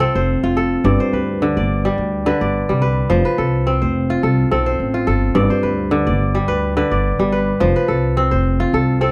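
Kora and upright bass start together at 0.0 seconds in this joyful West African traditional piece, cut from a longer performance. The kora sits up front, its fingerpicked arpeggios sounding crisp and ringing as they span a broad register. Beneath it, the pizzicato upright bass on steel strings gives a woody, low foundation. The harmony alternates between F and G in G mixolydian, moving at 106 BPM in 4/4 with a light swing on the sixteenths. The dry, close sound of a 1970s-style studio keeps both instruments intimate and warm through the nine-second span.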